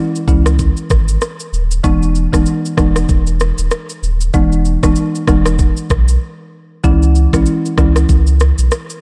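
An afrobeats groove at 96 BPM in 4/4 with a swung sixteenth feel, built from an electronic, up-front drum kit with a knocking kick, rim click and shaker, a deep, round sine sub bass, and a woody, rustic folk marimba played with medium mallets in a boxy small room, moving from C#m to Emaj7 before a brief break at 6.2 seconds and a return to C#m, for a hypnotic, mellow mood in a dark, dry production cut from a longer piece.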